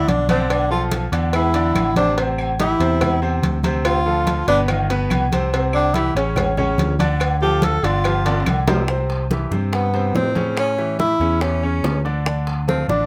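A breathy tenor saxophone leads this Afro-Cuban jazz excerpt, its mellow, whispered tone and gentle vibrato sitting up front in a solo that runs through the first 8.9 seconds before the music moves into a new section. Beneath it, a bright grand piano supplies accompaniment while a picked electric bass, growly and punchy, anchors the low end at a brisk 143 BPM in straight 4/4. The percussion is layered and danceable: ringing congas in the background, tight, high-tuned cowbell and bongos played close and dry, distant agogo bells and timbales with a metallic shimmer, and woody claves that drop out at 8.7 seconds. A drum fill at 8.3 seconds marks the turn into the second section, where the harmony shifts from a minor-leaning progression toward a Cmaj7 and A7 before settling on Dm. Light reverb lends the whole a sophisticated feel, and the clip is cut from a longer piece.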